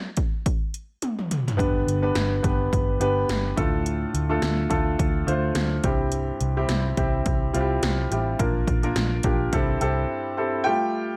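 A lightly swung 106 BPM groove in 4/4 opens this hopeful, uplifting piano-driven pop excerpt, with 80s electronic pad drums carrying a punchy kick, metallic hats and gated reverb on the snare and toms, and a drum fill leading into the full band at 1.6 seconds. There, a clear, open concert grand piano sits up front with deep bass beneath the chords, while a dark, round, foam-muted picked electric bass holds the low end as the harmony moves from G through Dm, C and Bb. A brief break arrives at 10.1 seconds before the piano carries on alone into a closing Fadd9, all set in a moderate large studio reverb.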